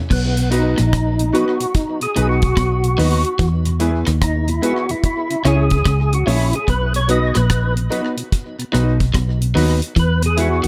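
A mellow, dark tonewheel organ with slow rotary speaker and tape echo opens this sunny, uplifting roots reggae cut, joined almost at once by an up-front percussive tonewheel organ soloing the melody with key click, chorus vibrato and tape echo, a round, punchy foam-muted fingered bass, a dry reggae kit with a tight kick, echoed rim clicks, hi-hat and crash, and a slightly broken-up picked guitar riff, while from 0.5 seconds a clean, chorused electric guitar fills in behind and deep grand piano stabs join over a swung B, E, C#m groove in a close, dry room.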